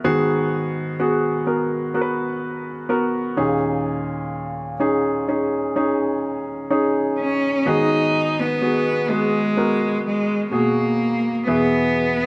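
A clear baby grand piano opens this slow pop ballad in G# minor at 63 BPM, laying down a polished, present accompaniment that sits up front and ranges from D#2 to B4. The mood is heartbroken and longing, with the harmony moving from G#m7 to D#7sus4 and back to G#m7 before reaching E near the close. At 7.2 seconds a single bowed cello enters with the melody, its smooth, even tone carrying vibrato and a distant quality even as it stays up front. The cello keeps to a narrow range between G#3 and D#4, singing over the piano until the passage breaks off at 12.3 seconds. A moderate, lush hall reverb with a 2.8-second decay gives the recording a spacious glow, and the whole piece is a short cut from a longer work.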